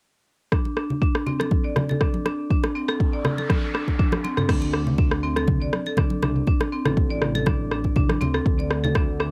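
A bright, percussive marimba struck with hard mallets sits up front, rolling out arpeggios coated in vintage 12-bit sampler grit, cassette tape color, a low-pass filter, analog delay and sidechain pumping. This driving, warm afro house cut, taken from a longer piece, moves with a light swing on a steady four-count. A deep, layered electronic kick and an overdriven afro-pop drum kit with crash cymbal, rim clicks and toms sit forward in the mix, both roughened by tape, while close, dry congas struck with hard hands add an acoustic pulse. An electronic noise sweep sits beneath the groove from 2.8 seconds and a drum fill leads into the second section at 4.5 seconds, where a dark, detuned saw bass enters with a rumbling, beating unison tone, tube saturation and pumping of its own. The whole recording carries the light reverb and character of a home cassette recording.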